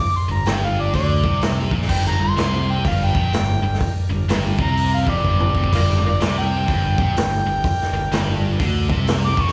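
Smoky and heavy, this swinging blues rock and southern rock power-trio excerpt rolls at 126 BPM in G minor, led by a gritty, amplified harmonica solo full of light vibrato, tongue slaps, scooped notes and slapback echo, over a bright, double-tracked distorted guitar riff, a growly, punchy fuzz bass, a very quiet, thick tonewheel organ through a rotary speaker, and a boomy, saturated garage drum kit that drops a fill at 5.2 seconds, all heard through a club PA with live room reverb.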